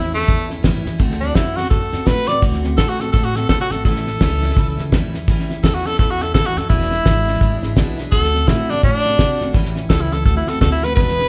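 Recorded live in one room with a moderate large-studio reverb, this rowdy, upbeat swung rockabilly fragment from a longer piece puts a bright, vibrato-laden tenor saxophone solo up front over a full-bodied picked dreadnought acoustic guitar, a woody pizzicato upright bass and a dark, cloth-damped thuddy drum kit with a fat snare and tight kick.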